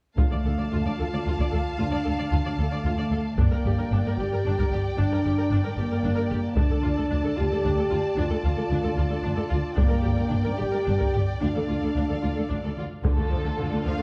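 Heavy-stick taiko drums, acoustic and vintage in their band-limited tone, stand out in this dark, epic orchestral film-score excerpt in D minor, moving at 75 BPM in a straight 6/8 as the harmony shifts between Dm and Gm. Lush bowed strings fill the texture: distant violins with soft-attack vibrato carry the melody over a smooth second violin line and rich viola accompaniment, while woody cellos and expressive double basses hold the low bass. A mellow French horn section sustains chords until 12.7 seconds, all set in a moderate scoring-stage reverb with a dark production.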